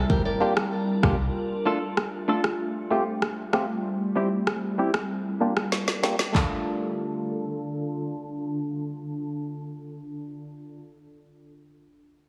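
A glassy FM pad with slow attack, ensemble chorus and phaser holds sustained chords through this tough, sultry dancehall piece at 96 BPM in D minor, moving through Gm7, Dm, Fadd9 and C. A fingerpicked flamenco guitar with audible finger squeak and a deep, sine-toned sub bass with octave open the music and stop by 1.3 seconds, while a very quiet electronic downlifter sits beneath them and a hollow, wave-folded organ stab plays percussive accompaniment from 0.4 seconds. An up-front electronic afro-pop kit with a deep kick, woody snare, rim click and handclaps drives the groove until 6.5 seconds, capped by a drum fill, all set in a heavily compressed, radio-style mix with plate reverb and a filter sweep.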